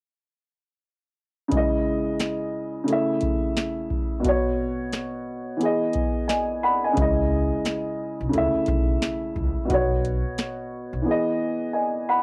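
A dark, mellow upright piano and a booming analog drum machine open this moody, tough boom-bap hip-hop passage at 1.5 seconds, settling into a swung 88 BPM groove in C# minor. The piano sits up front with a smooth, vintage character, filtered at both ends and softened by cassette tape as it moves through C#madd9, A/C#, Bsus2 and Emaj7. The drum machine supplies a deep kick, a tonal snare and metallic hats, its tape-warmed punch also placed close. At 7.0 seconds a woody, pizzicato upright bass with steel strings joins, thickened by tube saturation as the chord cycle repeats. Light reverb and the grain of a home cassette recording give the whole excerpt a dusty, intimate feel, and the piano carries on alone until 12.2 seconds in this fragment cut from a longer piece.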